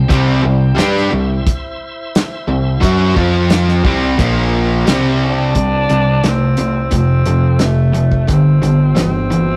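A raspy, growling tenor saxophone solo with vibrato enters at 5.2 s in this sunny, swaggering classic rock fragment in C mixolydian at 88 BPM, riding over a riff from two picked electric guitars, one bright and cranked, the other crunchy and overdriven, plus a warm, driven picked bass, a dry, tight 70s drum kit up front, and a very quiet key-clicking tonewheel organ on a slow rotary speaker holding chords until 5.5 s, captured as a rough rehearsal-room recording with stone room reverb.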